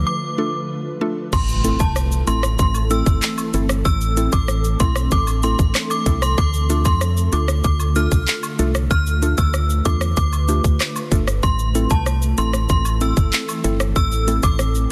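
The groove is a straight, steady dancehall beat in 4/4, carried by a tight, up-front electronic island pop kit with kick drum, smooth hi-hats, rim click, handclaps, shaker and crash cymbal, plus a tape-warm sheen, all arriving at 1.3 seconds after a brief opening break. Underneath, a dark, hollow FM bass with an organ-like tone and percussive, decaying attack sits up front from the very start, while quiet woodblock and cabasa add a small-room acoustic texture in the background. A ringing, inharmonic synth chime carries the high melody with ensemble chorus and digital delay, and a woody, round mallet-like pluck with a noise layer and chorus fills out the middle as accompaniment. Behind them, an ethereal, airy pad of detuned sawtooth and triangle voices holds sustained chords, bathed in ensemble chorus and reverb and pumping under sidechain. A faint electronic impact marks the drop into the main groove, and the chords move slowly between Dm and Am, giving this excerpt from a longer piece a sultry, hypnotic mood inside a dense, heavily limited modern mix with light reverb.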